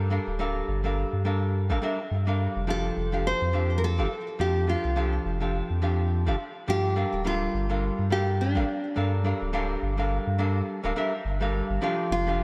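Sunset chillout with a blissful, warm mood, moving at 105 BPM with a gentle 16th-note swing and tuned slightly low, in a short excerpt cut from a longer piece. A dark, clean hollow-body jazz guitar carries the accompaniment through Gm9 and F6 chords, roughened by vintage 12-bit sampler grit and digital delay, over a deep, round sine sub bass that holds sustained notes up front. At 2.7 s a fingerpicked classical nylon-string guitar enters with the melody, its own digital delay trailing it, all set in a lush hall reverb with a dark production.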